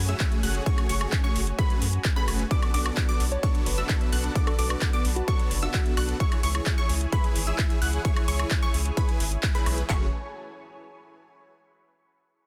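Dense, heavily limited and nearly dry, this powerful, anthemic festival progressive house drop puts a punchy big-room kick and handclaps up front over an overdriven pop kit with metallic hats and woodblock, while a sidechain-pumped saturated sub bass, a huge detuned supersaw riff and a wave-folded unison pluck arpeggio with dub echo drive forward, a lush phased pad holds sustained chords in the background, and a soft, round FM lead plays a brief melody from 3.3 to 6.1 s.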